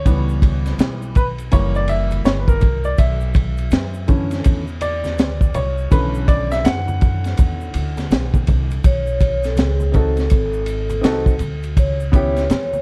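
Mellow and cool, this 82 BPM jazz-hop excerpt swings over a gritty, saturated breakbeat kit with a punchy kick and high-tuned snare, joined by a thumpy pizzicato upright bass, a faint egg shaker and congas, and an intimate upright piano, its action noise audible, soloing until 8.8 s before a ringing soft-mallet vibraphone with slow motor vibrato and analog delay takes the melody from 8.9 s, all within a dark, close production.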